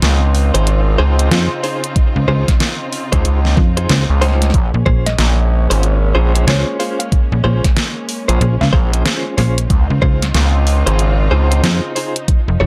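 A dark, lightly reverberant production frames this swaggering, playful glitch hop excerpt, moving at 93 BPM in 4/4 with a 62% swing on the sixteenths and tuned to A4 = 441 Hz. A rich, bowed studio string section holds sustained chords from the start, its vibrato roughened by vintage 12-bit sampler grit and pulsing with sidechain pumping beneath the harmony of Dbmaj9 moving to Bbm9 at 4.5 seconds and back. Down low, a gritty, nasal synth bass with tube saturation sits up front, joined at 1.3 seconds by a snappy FM bass whose metallic attack gives it a slap-like bite. An overdriven pop kit supplies hi-hat and a deep snare, while a knocking electronic kick, also overdriven and up front, arrives at 2.0 seconds. A clean, direct-recorded electric guitar plays scooped, compressed stabs colored by tremolo, tape echo and sidechain pumping. From 5.1 to 9.5 seconds, a woody, mellow wave-folded pluck carries a melody in the background, softened by chorus and tape echo.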